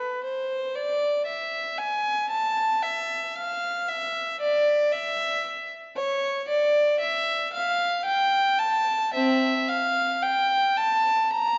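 A rich, reedy solo violin with gut-string tone and light vibrato plays up front in period style through this introspective, solemn fragment of a baroque-style suite movement in 3/4 at a rubato 57 BPM, set in a wet church reverb within a dark, warm production with vinyl crackle and a muffled top end, cut from a longer piece.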